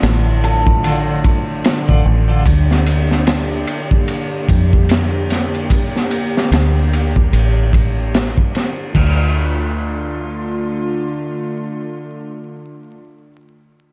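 Trip hop at 74 BPM in D minor, this brooding, dark fragment of a longer piece moves with a swung sixteenth-note feel. A crunchy breakbeat drum kit sits up front with a high-tuned snare, tight kick, and dark ride and crash cymbals, its saturated, gritty sound rolled off at the top, playing until 9.2 seconds. Beneath it, a deep dub fingered electric bass, foam-muted and round, holds the low end from A1 to F2 until 11.3 seconds. A dark chamber string section sustains nasal, reedy gut-string chords throughout, moving from Dm to Bb6/D at 2.5 seconds and back to Dm as a second section begins at 8.9 seconds. In the background, a shimmering hammered dulcimer carries a brief ringing melody and an airy, bright harpsichord adds tremolo accompaniment, both touched with tape echo. The harpsichord stops at 2.4 seconds and the dulcimer at 3.4 seconds. The dark production is steeped in studio reverb and vinyl crackle.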